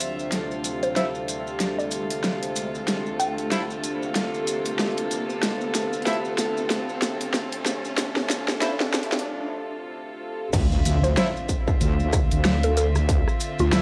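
Gritty and funky, this glitch hop excerpt in D minor moves at 94 BPM with a swung feel, opening on a Dm9 chord as rich, bowed chamber strings and a deep, moody ambient pad sit under a woody, wave-folded pluck melody, clear punchy horn stabs, grainy background maracas and a dubstep kit with a huge snare and bright hats, most of them colored by cassette tape. A riser and a drum fill carry the build-up until a break at 9.3 s, and at 10.5 s the drop lands with an impact, a distorted electronic kick and a heavy, saturated wobble bass pushed up front, while the pluck returns at 11.0 s.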